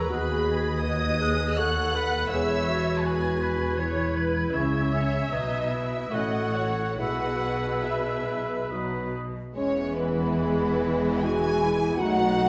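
A slow, serene romantic movement for symphony orchestra in E major opens with the full string body at once. A violin section with light vibrato carries the melody high and smooth, while a second violin section sits lush and expressive in the background. Beneath it, the viola section fills in accompaniment, the cellos add a rich bass with vibrato and portamento, and a double bass section anchors the lowest register. In 3/4 at roughly 68-85 BPM with a rubato feel, a mellow, tight French horn section holds sustained chords from 0.1 seconds, moving from B/D# through E, C#m and A toward E/B and B. Woodwinds add second lines: a small flute group with a pure tone and crisp attack, a distant, roomy solo clarinet, and a solo oboe that drops out at 9.2 seconds. The whole passage sits in a wet recital-hall reverb, and at 9.6 seconds it settles back onto E as a new section begins.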